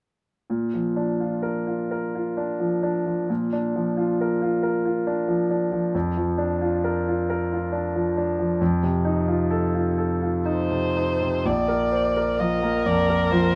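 A bright concert grand piano opens this slow, serene romantic movement for piano quartet. It sits up front with a brilliant top, deep bass and long, open sustain. The music moves at 59-70 BPM in 3/4 with a rubato feel in Bb major, and its harmony passes from Bb through Bb/F and F7 before returning to Bb. At 10.5 seconds a muted violin enters with the melody: a single bowed player, up front yet distant, with a dark, veiled con sordino tone and vibrato. At 12.4 seconds a close, warm muted viola adds soft-attacked accompaniment on Bb4, while a muted cello in the background holds a second line on F3 with portamento. Light reverb surrounds the quartet in this passage, which is cut from a longer piece.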